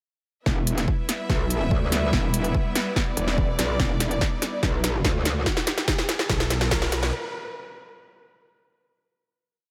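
A short, aggressive burst of heavy wobble dubstep in E minor at 144 BPM with a half-time feel, tuned slightly low to A4 = 439 Hz, opening at 0.5 s with most parts entering together over a single Em chord. A metallic, FM-based wobble bass sits up front, distorted, compressed and thickened with chorus, playing modulated phrases whose wobble speed keeps changing. Alongside it, a punchy layered electronic kick and a big-room dance kit with a punchy snare and crisp closed hats drive the half-time beat, running as one long drum fill through the build. A clear, lush symphonic string section holds smooth bowed chords with vibrato, pumping against the sidechain, and falls away with the wobble bass at 5.4 s. A growling, detuned sawtooth bass snarls in with chopped phrases that answer the wobble, while a background riser climbs from 3.5 s to the end at 7.1 s under a light reverb, making the whole piece one tense, heavy build-up.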